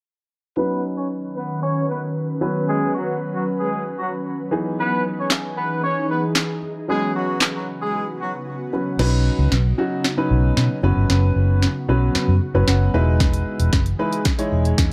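A warm horn section carries the melody over intimate grand piano and an airy, detuned pad in this upbeat, carefree dance-pop excerpt in B major at 114 BPM, with an overdriven R&B drum kit arriving at 5.3 seconds and a round, foam-muted electric bass joining at 9.0 seconds for a build-up marked by a drum fill and a brief piano fill, all set in a dark production with light digital ambience.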